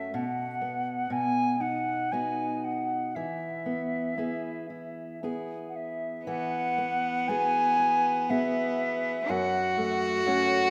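In a free, rubato triple metre, this tender and wistful Celtic slow air sets a pure, mellow wooden flute melody with vibrato over fingerpicked steel-string acoustic guitar with audible finger squeaks, joined at 6.3 seconds by a rich, earthy bowed cello second line, all resting in a moderate concert-hall reverb.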